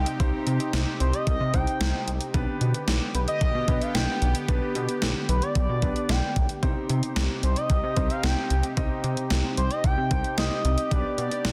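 A driving 112 BPM straight 4/4 beat from an overdriven, gated 80s digital drum machine with a thumpy kick and gated-reverb snare anchors this melancholic synth-pop excerpt in C harmonic minor, where a glossy, pulse-width-modulated synth bass sits up front beneath a bright, detuned sawtooth pad, a warm grand piano, and a smooth, nasal synth lead with vibrato and tape echo carrying the melody over Cm and G/B chords, all in a dense, heavily limited mix with light reverb.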